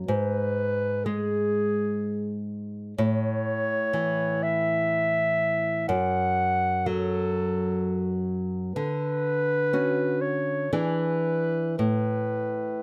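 Romantic chamber music for clarinet and classical guitar, tender in mood, unfolds at a slow, rubato 62 BPM in 3/4 and A major. A dark, present clarinet carries the melody up front from 0.1 seconds, while a small, fingerpicked nylon-string guitar gives warm accompaniment from the start, the harmony moving through A, Dmaj7 and E7 before settling on A5 at 11.8 seconds. Close, detailed microphones and light reverb frame this short excerpt cut from a longer piece.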